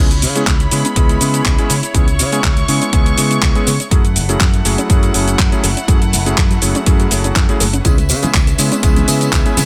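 Nu-disco at 122 BPM with a light 16th-note swing and a groovy, cosmic mood, this short excerpt sets a vintage electric grand piano with a clangy low end, pumping and delayed, over sustained sul tasto chamber strings with light vibrato, a very quiet nasal analog pluck arpeggio, a dark, round fingered electric bass, an up-front pop kit of handclaps, metallic hi-hat and shaker, and a punchy layered electronic kick, while tambourine and congas slip into the background at 7.8 s, all moving through C#m7 and F#m7 in a digital ambience.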